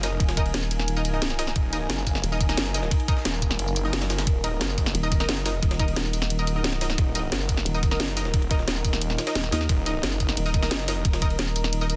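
Dark technical drum and bass at 177 BPM in Eb minor, this futuristic, dark excerpt sets a snarling distorted saw bass and a nasal vowel-sweep wobble bass, the latter dropping out between 2.6 and 4.9 seconds, against a knocking electronic kick, a cracking-snare drum and bass kit with hi-hat and tambourine, a very quiet gritty jungle sampler-style kit with ride and high-tuned snare, bright punchy orchestra-hit-like stabs with tape echo, and a deep moody sidechain-pumped pad sustaining an Ebmadd9 chord, all under a dense, heavily limited modern master.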